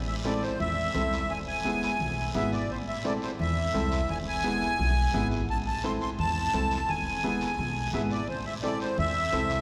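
Cumbia in A harmonic minor at 172 BPM, driving and fiery, with a reedy, sweet accordion carrying the melody up front over a thumpy pizzicato upright bass, a clear upright piano with audible action noise, ringing high-tuned congas in the background and a raspy guiro, all alternating between Am and E and bathed in a cathedral reverb in this excerpt cut from a longer piece.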